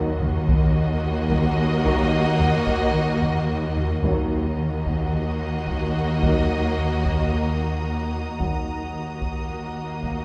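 This is a cinematic suspense film score cue in Eb minor, ominous and eerie, moving at a slow 55 BPM in a straight 4/4, cut from a longer piece and resting on a single Eb minor chord throughout. Violins carry the melody around Eb5 with a focused, lush vibrato, joined by a second violin line lower down, while a rich viola section fills in accompaniment and rich cellos and woody double basses hold a bowed bass on Eb2 in the background. A bright, thumb-plucked concert harp rings out a riff, and a taiko ensemble struck with hard sticks sounds close from 0.2 seconds. Very quiet brass adds sustained chords until 8.8 seconds, pairing a clear, present trombone section with a distant, roomy French horn section, and a dark, mellow vintage baby grand piano adds faint texture between Gb4 and Gb5. At 4.0 seconds a higher violin layer enters around Bb5 to Eb6 as a smooth, even texture. The whole orchestra sits in a wet scoring stage reverb, heard from further back in the room.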